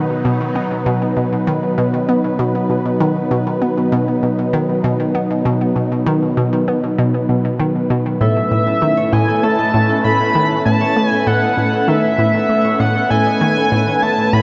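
A hollow, bouncy square-wave pluck drives this cosmic, expansive slice of sequencer-driven space music, its detuned riff snapping with a fast attack and short decay, coloured by chorus, phaser and delay. Beneath it, a sweeping resonant pad holds sustained sawtooth chords that slowly swell and evolve, airy and brilliant, as the harmony rests on B at a steady 98 BPM in straight 4/4. At 8.2 seconds the chord moves to Aadd9, and a shimmering, retro pulse-width lead enters up front with a high melody, its ring modulation and vibrato glinting through chorus and delay. A ringing acoustic concert harp arrives at the same moment with arpeggios set back in the mix, and at 9.8 seconds a very quiet, dark, breathy wind-like texture drifts in underneath. Everything sits in a huge, wet ambient reverb that lets each sound hang in space, leaving this fragment of a longer piece feeling vast and weightless.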